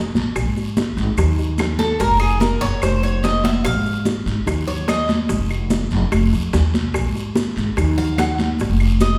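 The bright, metallic Cuban tres takes the lead up front, picking arpeggios on its doubled strings from 1.8 seconds and returning at 8.0 seconds, with some strings ringing in octaves. This is a danceable, sultry slice of Cuban son and guajira at 146 BPM in a straight 4/4, cut from a longer piece. Underneath, a pizzicato upright bass with steel strings sits up front and sounds woody and warm, and congas with a thick-skinned, high-tuned tone are played with soft hands, close and dry. Round, low-tuned bongos, raspy guiro and grainy, mellow maracas fill out the percussion, while woody claves tick in the background. The harmony moves through chords such as Fmadd11, Dbmaj9/F and Ebmadd9 before settling on Fm7, broken up by chordless stretches. The whole group sits in the lush reverb of a recital hall, giving the close-miked drums and strings a church-like bloom.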